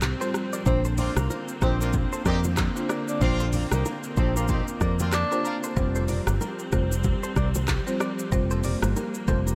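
Breezy and romantic, this short afrobeats excerpt moves at 94 BPM in Bb major, with a swung sixteenth-note feel and a dreamy mix soaked in huge ambient reverb. Up front, an electronic afro-pop drum kit with a deep kick, metallic hats, handclaps, rim clicks and shaker pairs with a bright, punchy fingered electric bass that sits in a foam-muted low register. Woody marimba with rosewood bars carries the accompaniment, while a string section holds sustained chords in the background and very quiet, ringing bongos and congas fill out the percussion. A twangy, compressed clean electric guitar plays a background riff through lush chorus and tape echo, entering at 0.2 seconds. From 0.7 to 5.6 seconds a vintage, jazz-style tenor saxophone sings the melody with light vibrato, joined at 1.0 seconds by a distant, roomy horn section on a loose second line, both touched with tape echo. The harmony moves from Fsus2 to Bbadd9 and back to Fsus2 at 5.8 seconds.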